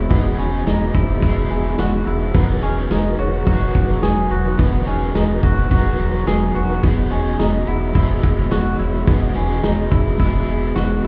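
A saturated, gritty vintage drum kit of kick, snare, ride and tambourine sits mid-forward from 0.1 s, beside a round, deep analog bass holding E1, setting a blissful, ethereal dream pop groove at 107 BPM in E lydian, cut from a longer piece. A dark overdriven guitar with harmonic tremolo and chorus, a twangy clean guitar picking compressed arpeggios through chorus and tape echo, and a soft, flute-like tonewheel organ with key click, chorus vibrato and fast rotary speaker drift over Emaj7 and G#m7/E chords. A very quiet, bell-like celesta adds airy texture from 0.4 to 8.9 s, and the whole mix sounds muffled as if heard through a wall, wrapped in recital hall and club reverb.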